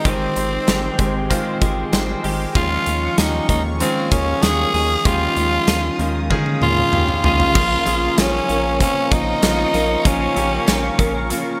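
This excerpt has a bright, glossy 1980s-style digital sheen, with light studio reverb around a moody, urgent pop groove at 96 BPM in a straight 4/4, set in Bb dorian. A raspy, gritty tenor saxophone carries the melody up front with vibrato and a touch of digital delay, while a polished grand piano with long sustain and a clean, compressed twelve-string electric guitar riff sit beneath it. A swirling analog pad holds sustained chords in the background through phaser and chorus, and a rubbery, hollow square-wave bass bounces along underneath. The big rock drum kit is acoustic and roomy, with a punchy kick, snare, toms, hi-hat, crash and tambourine all bathed in gated reverb. It plays a fill from 6.3 to 7.6 seconds as the harmony moves from Abmaj7 and Eb9sus4 to Bbm. A distant, lush violin section enters very quietly at 6.6 seconds, and round, detuned synth brass stabs join at 8.2 seconds.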